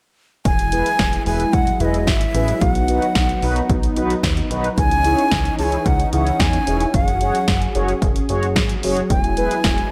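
Opening at 0.5 s, an up-front, punchy analog drum machine with kick, snare and hi-hat drives this melancholic synth-pop piece beneath a glossy chorused synth bass of pulse and sawtooth tones, a smooth detuned analog pad holding sustained chords, a dark, brassy synth brass line with vibrato that enters at 0.7 s, and a breathy, bright bamboo bansuri melody on top, with the mix set in a moderate recital hall reverb.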